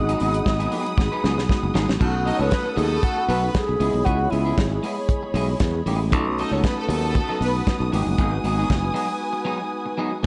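Driving and danceable, this disco fragment at 116 BPM in a straight 4/4 is cut from a longer piece and moves through G#m7, B7 and C#m7 chords. A reedy, airy alto flute with soft attack and vibrato carries the melody from a distance before stopping at 5.1 seconds, while a dark, woody string section holds lush bowed chords and a clean tine electric piano sits in the background through its built-in speakers. Up front, a bright, growly fingered electric bass punches out the low end beside a dry soul drum kit with a tight kick, medium-tuned snare and dark cymbals, which plays a fill from 1.0 to 2.0 seconds. A compressed, picked electric guitar at the edge of break-up adds accompaniment, and a clear, focused string section enters at 2.3 seconds with a close, vibrato-rich second line. Bass and drums drop out just before a break at 9.2 seconds, leaving the keys, guitar and darker strings in a small room with light reverb.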